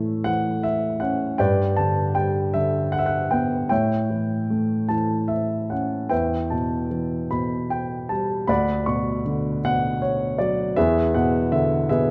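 Lyrical classical solo piano in a melancholic, reflective mood: a grand piano plays alone in 6/8 with free rubato and uneven beats, moving through chords such as Gmaj13, Em and E7. The instrument sounds dark, mellow and intimate, placed up front with the noise of its action clearly audible. A moderate concert-hall reverb adds natural space. This 12.1-second passage is cut from a longer piece.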